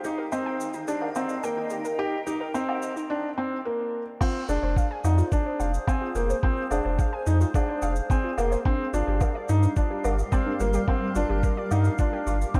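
A soft, felt-muted upright piano riff with delay sits up front in this cinematic, melancholic piano and strings electronica excerpt, framed by a blurred, evolving granular cloud pad holding sustained chords, warbling lo-fi pluck arpeggios with chorus and delay, and warm acoustic shaker, woodblock and crash cymbal played with brushes, until a muffled, thumpy pitched-down kick drops in at 4.2 seconds and a round sine sub bass joins at 4.5 seconds, with the pad, pluck and bass pumping against the kick as the harmony moves from Eb through Fm to Gm7.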